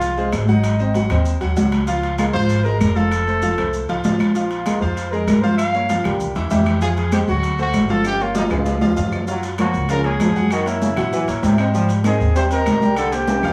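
A distant, vibrato-tinged trumpet with scooped notes and a slapback echo leads this passionate, driving salsa cut from a longer piece at 195 BPM, over a brilliant, slightly worn grand piano with audible action noise, a thumpy, woody upright bass up front, soft-handed high-tuned congas, close grainy maracas, ringing background timbales and vintage-sounding claves from 0.3 s, until a drum fill at 8.1 s gives way at 9.3 s to a punchy trombone section entering over a Gbmaj7 passage in a large studio reverb.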